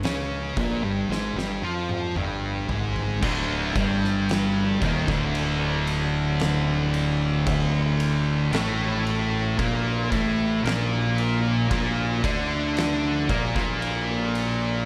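A slow, straight 4/4 at 57 BPM drives this ominous, sludgy stretch of stoner and doom metal in D minor, cut from a longer piece. Two thick fuzz guitars, one dark and set back and one up front, grind out the riff over a growly, overdriven fingered bass and an oversized low-tuned drum kit with a fat snare and punchy kick that plays a fill from 1.1 to 3.2 seconds. At 3.2 seconds a bright, scooped, double-tracked high-gain guitar joins as the harmony moves from Fmadd9/G to D5 and later Bb, all in a dry sound.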